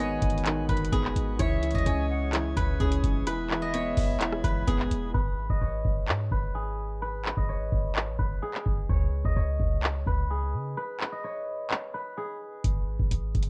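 A dark, brooding half-time trap cut opens on a ringing, silvery fingerpicked zither melody through a low-pass filter, alongside a distant, airy flute line with tape echo, a soft, felt-muted upright piano with audible action noise, a background chamber organ chorus with chiff, and a deep, boomy, clean 808-style bass. An up-front, dry analog drum machine with a deep kick, metallic hi-hats, handclaps and rim clicks enters at 0.2 seconds. From 5.1 seconds, as the piano drops out a moment later, zither, bass and drums carry on through a break and filter sweep, all wrapped in small-room ambience and a worn, warbling cassette-tape pitch drift, as the excerpt is cut from a longer piece.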